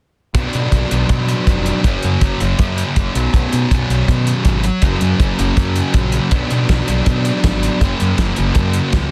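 Indie rock at 161 BPM in F# major, this short, upbeat excerpt cut from a longer piece has a jangly lift and a straight 4/4 drive. A thick, double-tracked fuzz guitar sits up front playing a picked riff, its distorted tone ranging from F#2 to D4. Beneath it, a growling fingered electric bass adds overdriven grit with a round, punchy body, heard both direct and amped. A cloth-damped acoustic drum kit thuds along in a small room, with a fat snare, tight kick and hi-hat under a rolled-off top. All three parts enter together at 0.3 seconds, moving through Bm, F# and Bsus2 chords in a dry, dense and heavily limited modern mix.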